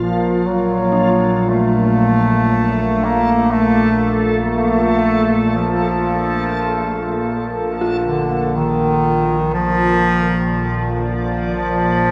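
Unsettling and ominous, this dark ambient drone excerpt in Bb major moves at a slow 60 BPM, with a clear, up-front bass clarinet carrying a classical-style solo melody through a diffuse ambient delay. Beneath it, a nasal analog drone with pulse-width modulation and chorus evolves under a filter sweep, while a deep, mellow pad holds sustained chords in the background, a reversed, granular texture swells brightly, and a very quiet, inharmonic FM bell traces eerie arpeggios. The whole recording sits in a huge, wet reverb and carries the worn, warbling pitch drift of old cassette tape.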